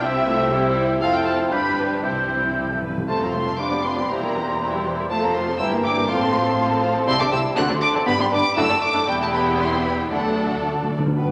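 Moving in a quick 2/4 at 119 BPM with a rubato feel, this cheerful, spirited classical-period orchestral passage, cut from a longer piece, begins in C major and shifts to F major at 3.1 s. An expressive, lush violin section carries the melody up front, while an airy flute with lifted highs and a rich second violin section in the background add a second line; bowed violas with portamento and a soft-attack bassoon fill in the accompaniment, a tight French horn section holds sustained chords, and focused cellos join clear double basses on the bass. Close, dry timpani on calf heads play fills at 2.0 s and 10.1 s, all within a wet concert hall reverb.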